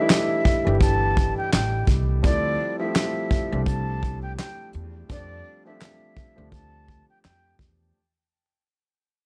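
Tough and moody, this short boom-bap hip-hop excerpt moves at 84 BPM in 4/4 with a swung sixteenth-note feel, cut from a longer piece and fading out across its whole length. A breathy concert flute carries the melody in a straight, soft-attacked tone, heard close and filtered. Beneath it, an upright piano gives intimate, woody accompaniment with audible action noise and long sustain, colored by a cassette-tape character. The drum kit, played with brushes in a small room, sits up front with a fat snare, punchy kick, hi-hat and handclaps, while a pizzicato upright bass with steel strings enters at 0.7 s. The harmony moves from A7sus4 to Dm11 to F69 under light reverb and a layer of vinyl crackle.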